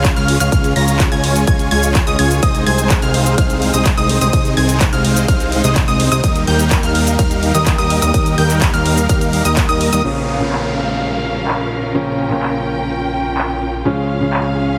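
Festival progressive house at 126 BPM, this uplifting, euphoric excerpt opens in the middle of a drop, with a huge, detuned supersaw riff up front, filtered and delayed, over a fat, saturated analog bass and a punchy, layered electronic kick. Above them a lush, bright unison pluck spins arpeggios through a digital delay, while a bowed string section holds sustained chords in the background with vibrato and portamento, and nearly every melodic part pumps against the kick through sidechain compression. A big-room dance kit of handclaps, hi-hat, ride cymbal and cabasa rides along, its hats, cymbals, percussion and snare all dulled by low-pass filtering. The harmony moves from Db through Ab/C to Eb, then turns to Bbm at 10.0 seconds, where the supersaw and pluck stop and a warm concert grand piano enters with short-sustained, delayed accompaniment and a deep bass tone. The kick drops out at 9.7 seconds, an electronic downlifter falls away beneath the piano and strings until 13.9 seconds, and the chords return to Db. 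The whole mix sits in a moderate concert-hall reverb and carries a heavily compressed, radio-ready loudness.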